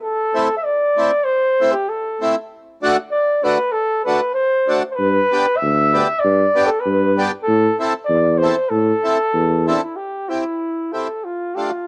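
A home cassette recording in a snug booth, this short cut from a longer alpine folk dance tune has a homely, slightly vintage character. At a jolly, bouncy 96 BPM in 2/4 with a straight feel, it sits in A dorian and moves through Am, D and G before turning to C and Dm in its closing stretch. A warm, distant-sounding flugelhorn carries the melody throughout in a classical style, its tone coloured by cassette tape and plate reverb. A reedy, full accordion supplies the accompaniment up front, also bathed in plate reverb. At 5.0 seconds a clear tuba joins on the bass line with a light vibrato and a touch of transformer saturation, dropping out at 9.8 seconds as the tune shifts toward its final phrase.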